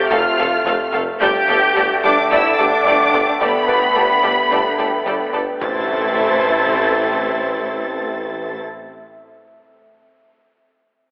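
Relentless and vast, this 109 BPM cinematic cue in A minor blends orchestra and electronics, with a rich, lush violin section carrying the melody up front over second violins, portamento-tinged violas, cellos, double basses, trombones, a tuba, a very quiet dark French horn section, an airy, breathy chorused pad and a deep sine sub bass, all moving from F to Gadd9 and settling on A minor at 5.6 s. A felt-muted upright piano and a nasal, detuned analog pluck playing arpeggios add very quiet texture until about 5.6 s, when a faint electronic impact arrives. The whole cut sits in a wet scoring-stage reverb, yet carries a narrow, telephone-like tone.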